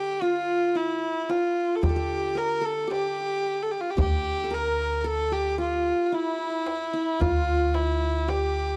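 Passionate and warm, this short excerpt of a Turkish makam ensemble piece in D makam ussak moves at 112 BPM in 10/8. A nasal, airy-bowed kamancheh carries the melody up front with light vibrato and portamento over a bright-edged, fingerpicked qanun playing a second line in the background and a woody, growly pizzicato upright bass. A crisp, deep metal-shell darbuka struck with hard hands joins at 1.3 seconds, all captured in a dry, close 1970s-style studio sound.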